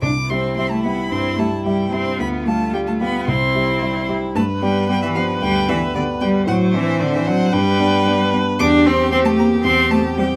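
A violin, viola, cello and grand piano open together in this cheerful, spirited classical-period piano quartet movement in 4/4, cut from a longer piece and played with rubato. The rich, expressive violin carries the melody with vibrato, portamento and a soft attack over a clear, smooth cello second line and a dark, mellow, vintage-toned piano accompaniment set up front, while a bowed viola fills the middle evenly, captured by close, detailed microphones in light reverb.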